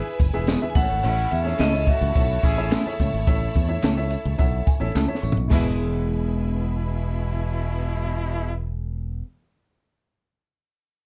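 A straight 4/4 groove at 107 BPM drives this joyful, danceable 1960s-style soul excerpt in E major, built on a compact cocktail drum kit with a punchy kick and high-tuned snare, a bright, up-front fingered electric bass, very quiet low-tuned congas, and tambourine and handclaps in the background. A vibraphone struck with hard mallets carries the ringing, metallic melody until 4.9 s, while a woody upright piano accompanies and adds a fill. A slightly broken-up electric guitar plays stabs through analog chorus, and a smooth-topped horn section and a lush, distant violin section with vibrato supply second lines, before the drums stop at 5.6 s after a fill, all in a dark production with light reverb.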